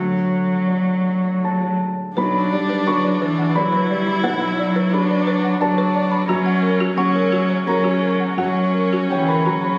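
A felt-muted upright piano and a single bowed cello open this neoclassical piece for piano and strings, the piano's soft, intimate tone spreading from deep bass to high treble as the cello carries a smooth second line with vibrato. The music moves in a rubato 3/4 at around 87 BPM, with uneven beats that give it a longing, reflective mood in B minor. At 2.2 seconds, a lone bowed viola joins the accompaniment with a focused, up-front sound, and a folk marimba played with medium hard mallets begins arpeggios whose woody, rustic bars carry a tape echo. The harmony moves from D to B minor and then to F# at 6.3 seconds. A moderate large studio reverb surrounds the ensemble, heard through a phone recording made in the room, and the passage is cut from a longer piece.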